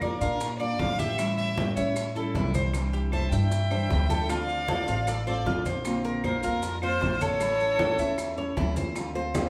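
A straight 4/4 pulse at 154 BPM drives this nostalgic Cuban son and guajira excerpt in D minor, carried by background congas, hard-handed bongos, woody claves and grainy maracas beneath a thumpy gut-string upright bass and a dark fingerpicked steel-string guitar. Up front, a single violin sings the melody with light vibrato and an airy sul tasto bow, while a metallic Cuban tres picks arpeggios on its doubled strings. A breathy, reedy concert flute adds a second line from 2.2 s until 8.6 s, when it and the violin fall silent, and the band sounds live in one room with a lush studio reverb.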